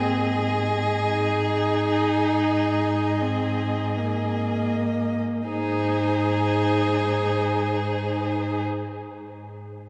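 All four strings of a quartet sound together from the start on an Ab major chord in this tender, serene slow romantic movement in free time, easing into a slowdown over its first 5.5 seconds. The first violin carries an expressive melody between C5 and Eb5 with vibrato and portamento, its tone rich, while the second violin holds a smooth, even Ab4; the focused viola fills in between Bb3 and Eb4, and the clear cello sustains a steady Ab2 bass, all bowed with vibrato. A long, wet cathedral reverb surrounds this brief passage cut from a longer piece, giving it a soft, dark-edged church or concert-hall glow.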